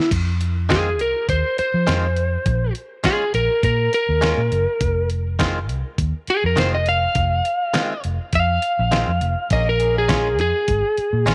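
A light reverb gives this short cut from a longer soul blues track a brooding, smoky air. A slightly broken-up lead electric guitar, dark and picked, carries a solo up front across the whole passage, moving over chords that shift between Fm7 and Bbm7. Beneath it, a foam-muted fingered electric bass sits round and amped near the front, while a dusty, compressed sampler-style drum kit brings a thumpy kick, fat snare, hi-hat and crash with a gritty edge and a subtle swing. From 0.7 seconds a direct-recorded clean electric guitar adds bright, twangy stabs. At 9.5 seconds a tight horn section enters in the background with clear, octave-doubled sustained chords, stopping at 10.4 seconds.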